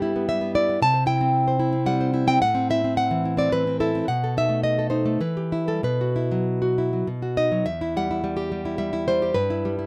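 Romantic solo classical guitar in E minor, this short excerpt moves in a rubato 3/4 between 93 and 114 BPM with a nostalgic mood. The fingerpicked nylon-string guitar sits up front with a full-bodied, deep classical tone, spanning E2 to A5 as it moves from C through Am69 and B7 to a Bsus4 that resolves to B and returns home to Em at 7.7 seconds. Light reverb lends a gentle sense of space.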